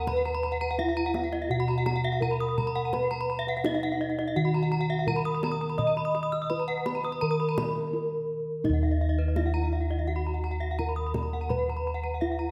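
Balinese gamelan in Eb pelog at 84 BPM, this hypnotic, shimmering fragment of a longer piece sets a mellow bronze metallophone melody, struck with padded disc mallets in a boxy small room, above round, beating bossed gongs that carry the bass close and up front. Two further metallophones spin arpeggios with horn mallets, one bright and dry, the other in the same boxy room, their paired tuning giving off shimmering beats. A tight kendang played with soft hands keeps time from 0.1 to 12.3 seconds, all heard on a moderate scoring stage.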